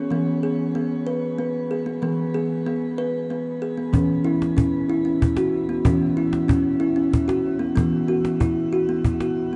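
Dark and wet with a long echo-chamber reverb, this excerpt from a longer piece is a gentle, calm world meditation in 6/8 at 63 BPM, tuned to A4 = 441 Hz, where an up-front, mellow, woody thumb-plucked kalimba rings out soft arpeggios through tape echo and shimmer reverb from the start, joined at 3.9 seconds by a close acoustic cajon with faint snares as the harmony moves from E to C#madd11/E and then B5/E.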